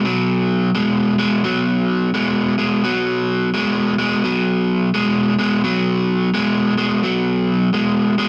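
The recording has a live-room feel, with a moderate studio reverb giving the sound a natural sense of space around the player. This short blues excerpt moves at a relaxed 86 BPM in 4/4, with a swung eighth-note feel that gives it a laid-back, swaggering mood. An overdriven electric guitar carries the whole 8.3 seconds as the solo voice, picked with a compressed, up-front tone that sits close to the listener. Its gritty warmth stays in a low register, from B2 up to G#3, over a B5 chord. The result is a gritty, unhurried slice of blues guitar that feels cut from a longer performance.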